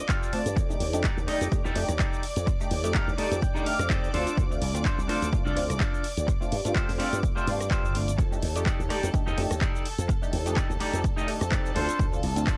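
Filtered disco house at 126 BPM in 4/4, with a light 16th-note swing and a sunny, feel-good mood, cut from a longer piece. A punchy, up-front electronic kick drives the groove from 0.1 seconds alongside a house kit of cabasa, handclaps, rim click and warm hi-hats, both carrying a tape-warm, layered sheen. A growly slap bass with an envelope filter and tube saturation sits underneath, while a nasal, detuned polysynth comp with a plucky filter and a sub octave adds funky chords coloured by chorus, phaser and cassette tape. A twangy, clean electric guitar plays a riff through vintage 12-bit sampler grit, with fills at the start and from 2.9 to 4.4 seconds. Above it all, a clear studio violin section holds sustained chords with light vibrato and an earthy tone. The harmony cycles through G9sus4, F13 and Dm7. Sidechain pumping breathes through the strings, guitar, synth and bass in a dry, gritty hardware-style mix.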